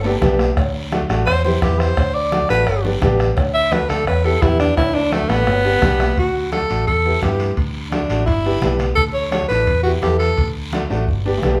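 A straight 4/4 cumbia pulse at 171 BPM drives this sunny, joyful Latin excerpt in D major, carried by a soft-beaten bombo, low-tuned damped congas, ringing vintage timbales and cowbell set in the background, and a raspy, distant guiro. Up front, a round, dark fingered electric bass anchors the low end while a bright, woody upright piano supplies accompaniment from 0.1 seconds. The breathy alto saxophone takes a solo through the first section, its close-miked, whispered tone carrying gentle vibrato and a soft attack, and it keeps the melody until 10.5 seconds. Drum fills mark the opening, the turn into the second section around 6.2 seconds, and the final moments, over chords cycling through G, D and E minor. The band plays together in one room, bathed in a lush studio reverb that lends the performance an open, live glow.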